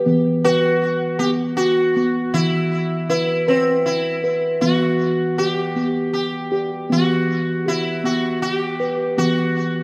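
Gentle and hypnotic, this short cut from a longer meditative world piece moves at 79 BPM in a lilting 3/4 with a light swing, set in E hirajoshi. A steel tongue drum opens at the start with ringing arpeggios struck by rubber mallets, its round, pure tone sitting up front with a vintage, band-limited character. Just after, at 0.4 seconds, a plucked sitar enters with a melody in a narrow middle register, its buzzing voice and sympathetic strings shimmering through a diffuse ambient delay. The harmony drifts from Esus2 to E5 and settles on E minor at 4.6 seconds as the passage moves into its second section, before falling away from chords near the close. A lush recital-hall reverb wraps the two instruments in a dark, softly glowing production that suits its contemplative stillness.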